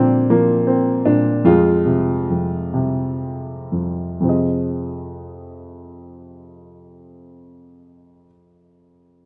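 Classical solo piano in F dorian, reflective and wistful, moving in a rubato 6/8 at a slow 36-56 BPM counted in dotted quarters. A dark upright piano, mellow and woody with a short sustain, sits up front in a moderate studio reverb, ranging from F2 to Eb5 as the harmony passes from Bb to Fm and then Fm7. The opening phrase slows down through its first 4.3 seconds before a second passage begins, and this fragment of a longer piece closes at 9.3 seconds.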